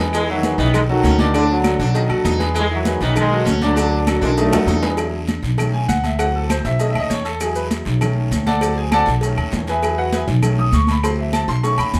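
Joyful and made for dancing, this salsa excerpt moves at a brisk 198 BPM in straight 4/4, centred on E major with chords cycling between Eadd9, B7 and D or D7. A bright trombone section carries the punchy, tight melody with light vibrato until 4.8 seconds, while a buzzing, plectrum-plucked sitar with shimmering sympathetic strings adds a second line during the first 4.9 seconds. A drum fill then leads into a brilliant, up-front grand piano solo from 5.0 seconds, its open tone and long sustain reaching into deep bass. Underneath, a thumpy pizzicato upright bass sits up front with a dark, woody sound. Congas, cowbell with bongos, ringing agogo bells with timbales, dry claves, raspy guiro and grainy maracas fill the background with a percussion bed, all set in moderate studio reverb.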